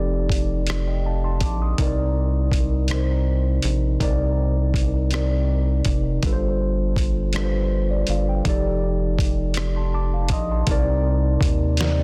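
Slow six-eight R&B in C dorian at 54 BPM, this yearning, late-night excerpt is cut from a longer piece. A mellow tine electric piano carries the accompaniment throughout, its worn, slightly out-of-tune tone coloured by analog chorus and heard through a combo amp, moving through F13, Cm9, G9sus4 and back to F13. A rubbery square bass sits up front from the start, hollow and nasal with a plucked filter attack and sustained notes. A dusty soul sampler-style kit enters at 0.3 seconds with hi-hat, rim click, a thumpy kick and a fat, gritty snare that carries soft clipping. The electric piano plays a fill from 9.6 seconds that leads into a new section at 10.7 seconds, landing on Cm9. The sound is set in digital ambience with a dense, heavily limited modern master.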